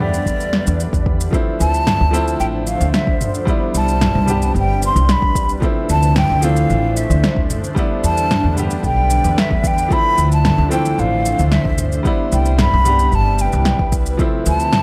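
A light reverb frames this relaxed sunset chillout piece, cut from a longer work, in D dorian at 112 BPM in a straight 4/4. A breathy, hollow jazz flute with vibrato and a soft attack carries the melody through a digital delay, over clear grand piano accompaniment and a shimmering, detuned ambient pad with chorus and a slow, granular swell of ethereal sustain. Up front, a woody, dark pizzicato upright bass anchors the Em7, Dm9 and Cmaj7 changes, while an overdriven deep house kit with shaker, punchy snare and toms is joined by a deep electronic kick that enters at 0.3 seconds and stops at 14.3 seconds.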